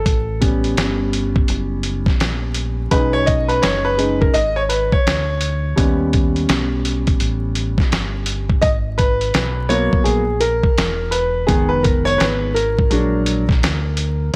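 An intimate grand piano takes the lead across this 14.4-second cut from a longer jazz-hop piece, sitting up front with a boxy, close character, audible action noise and long sustain as it moves through rich extended chords such as A9, B69 and G#m9 in G# minor. Beneath it, a deep fingered electric bass supplies a dark, round and punchy low end, heard direct and amped. A dusty, sampler-style drum kit, also up front, brings a thumpy kick, a fat snare and hi-hat, sounding compressed, gritty and tape-warm, as if re-recorded in a small room. The groove sits at 84 BPM in 4/4 with a lazy swing on the sixteenths, giving the hip hop feel a relaxed, nocturnal sway. The mix is dry, with a layer of vinyl crackle adding to its mellow late-night mood.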